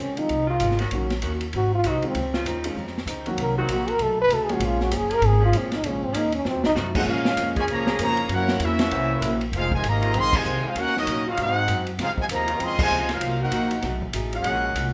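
Big band swing in a swinging, dramatic mood, this excerpt opens with a mellow, scooped trombone solo over woody upright bass, boxy picked acoustic guitar, intimate piano, a dark-cymbaled drum kit and a vintage saxophone section holding sustained chords, until a drum fill at 6.5 seconds hands the melody to a clear, up-front trumpet section at 7.0 seconds, backed by a tight trombone section's second line and band accents at 10.3 and 12.8 seconds in a moderate studio reverb.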